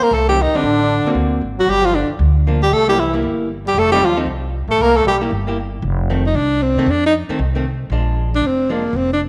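Heard through a moderate echo-chamber reverb, this swinging, sophisticated jazz excerpt is cut from a longer piece. A breathy, close-miked tenor saxophone with vibrato carries the melody up front, while a raspy, gritty, growling trombone with scooped notes and slapback echo plays a second line until 5.2 s. A woody, thumpy pizzicato upright bass sits up front, and a clean, picked hollow-body electric guitar enters at 0.3 s to comp through changes that open on a rootless F7 and move through Gm7, C7 and Bb7.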